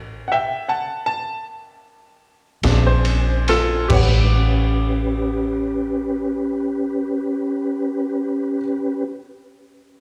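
Heard through a club PA with small-room ambience and club reverb, this swaggering, rollicking slow blues excerpt in 12/8 at around 46-54 BPM opens with a bright, worn baby grand piano, its action noise audible under a slapback echo, playing alone as the tempo slows, before a dark, foam-muted fingered electric bass and a crunchy, gritty breakbeat kit with dark cymbals enter at 2.6 seconds, the drums dropping out at 4.1 seconds while a mellow, flute-like tonewheel organ holds sustained chords through a slow rotary speaker and chorus vibrato over harmony moving from A7 to Bb9 to A13 in A mixolydian.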